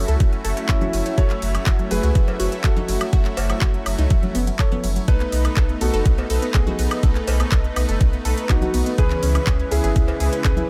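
A straight 4/4 pulse is driven by a knocking electronic kick up front, with crisp hats, handclaps, ride cymbal, shaker and woodblock from a layered pop drum kit, while bright, vintage-toned congas and cowbell sit softly in the background of this emotional, bittersweet progressive house excerpt. A round, deep analog bass, punchy detuned pluck arpeggios with dub echo, smooth supersaw stabs also sent to dub echo, and a thick, airy chorused pad all pump with the sidechain over chords moving from F#m7 to B7 and C#m7. From 0.7 s an intimate grand piano carries the melody through a delay, its action noise audible in a dry mix.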